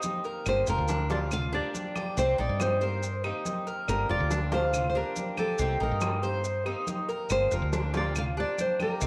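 Danceable and warm, this excerpt of Cuban son and guajira moves at 140 BPM in G minor. A boxy, fingerpicked swing-style acoustic guitar, metallic double-string arpeggios from the Cuban tres, ringing congas set back in a large room and grainy, close maracas lay down the groove. From 0.5 s a fingerpicked nylon-string guitar carries the melody up front with finger squeak and tape echo, over a dark, round woody fretless electric bass and distant claves in the background, as the chords alternate between Gm7 and Cm7 under a moderate spring reverb.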